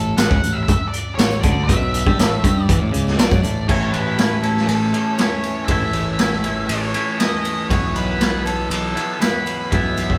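Heard live in a stone room with moderate reverb, this hazy, trippy psychedelic rock excerpt at 120 BPM in 4/4 sets a dark octave-fuzz lead guitar on the melody, treated with distortion and tape echo, over a bright, twangy, clean guitar riff, a round, overdriven fuzz bass, an up-front raw garage drum kit with a boomy kick and a gritty, saturated tone, and a very quiet, jingly tambourine, while the chords move from A5 to A at 3.7 seconds and to Esus2/B at 7.7 seconds.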